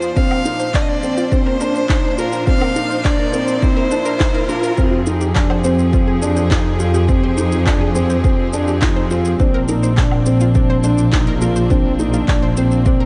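A steady, straight 4/4 pulse at 104 BPM drives this melancholic, hypnotic piano and strings electronica in F dorian, with a deep, up-front electronic kick and layered shaker, woodblock and handclaps under a felt-muted upright piano riff whose thick felt and audible action noise give it an intimate, dark tone, while a very quiet detuned sawtooth pluck traces arpeggios. During the opening build-up, a smooth solo violin carries the melody over a background riser, both ending at 4.8 seconds, as a biting, earthy string section holds sidechain-pumped chords. At the drop, a woody bowed double bass section enters, also pumping, over light reverb and studio ambience in this brief cut from a longer piece.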